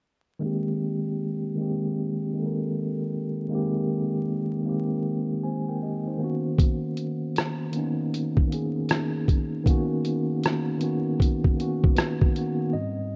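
A mellow tine electric piano carries this nostalgic, cosy lo-fi hip hop excerpt, entering at 0.4 seconds and sounding clean and warm, shaped by a low-pass filter that sweeps across its part, as if heard through built-in speakers. Its chords move from Abmaj9 to Bmaj9, spanning a comfortable range from low to high register at an unhurried 78 BPM in 4/4 with a 16th-note swing. A sampler-style drum kit joins at 6.6 seconds, compressed, muffled and pitched down, with a thumpy kick, hi-hat and rim click sitting up front in a tape-like haze. The drums drop out at 12.6 seconds, leaving the electric piano briefly on its own. Light reverb and vinyl crackle give the whole a rough home-demo character, and the passage is clearly cut from a longer piece.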